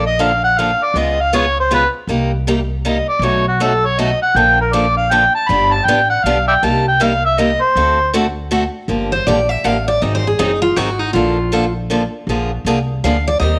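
A swung waltz in three carries this fiery, bittersweet stretch of acoustic string swing in the jazz manouche style, cut from a longer piece. An amplified, overdriven harmonica leads up front with a gritty jazz solo, colored by light vibrato, scooped notes and tongue slaps, until it drops out at 8.1 seconds. Beneath it, a jumbo steel-string guitar picks the accompaniment throughout, its fresh strings full-bodied and marked by the occasional finger squeak, while a pizzicato upright bass on gut strings adds a woody, thumpy, dark low end. At 9.1 seconds a second picked guitar, a boxy parlour instrument, takes over the solo line up front over chords that move from Gm7 through Ab7 to Bbmaj7 and Bb7. A small room's light reverb keeps the sound close and intimate.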